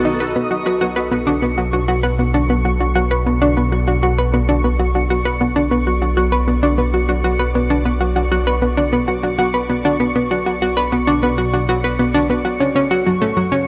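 Bathed in a moderate plate reverb and carrying faint lossy compression artefacts, this cut from a longer piece of ambient, sequencer-driven space music moves at 98 BPM in B minor with a mysterious, hypnotic pull. An up-front, round analog pluck with chorus and delay plays its riff over a mellow, evolving, detuned analog drone bass with its own chorus, while a twinkling granular texture sparkles above in its built-in reverb and a lush, vintage string machine ensemble holds very quiet sustained chords. A ringing, fingerpicked Celtic harp plays arpeggios only until 2.8 s, and the harmony rests on Bm7 before shifting to F#m7 at 12.6 s.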